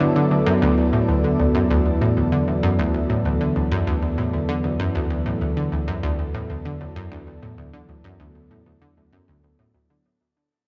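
Cosmic and hypnotic, this ambient, sequencer-driven space music excerpt rides a round, wave-folded analog pluck riff steeped in 12-bit sampler grit, tape echo and shimmer reverb over an evolving, detuned resonant pad of sustained chords and a fat analog bass sitting in the background, all inside a dark production with a moderate plate reverb as it fades out from 0.2 seconds on a D chord.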